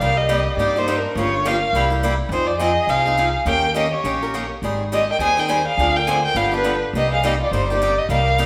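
A bowed violin carries the melody up front, its tone smooth on top, with vibrato and portamento giving the line an expressive, singing quality over this fiery, swinging stretch of acoustic string swing in the jazz manouche style, cut from a longer piece. The tempo is a brisk 207 BPM in 4/4 with a swung eighth-note feel, set in C minor and tuned slightly low at A4 = 438 Hz. A second violin plays a softer line in the background, sul tasto with light vibrato, an airy bow and a gentle attack, sounding intimate yet a little boxy. Also up front, a picked swing-style acoustic guitar provides the accompaniment with a bright, fresh-stringed sound, while a plucked upright bass adds a woody foundation beneath. The chords move from Cm7 through Fm7, Eb7 and Abmaj7 to Dm7b5 and G7 before landing back on Cm7 at 6.9 seconds, all heard as a band playing live in one room with a lush, reverberant large-studio ambience.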